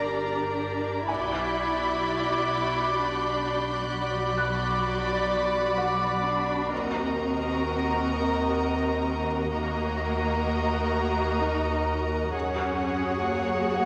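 Cinematic suspense score in 3/4, cut from a longer piece, uneasy and tense as the harmony moves from G minor through B minor and E-flat minor to an unresolved F-sharp suspended chord. Lush bowed violins carry a vibrato-laden second line up front beside focused violas, while cellos with expressive portamento and a clear double bass section anchor the low end over a dark, rumbling, warbling drone. In the background a felt-muted upright piano adds a soft, intimate texture with audible action noise, a clear, high violin texture plays until 6.2 s, and a scoring-stage reverb bathes the ensemble.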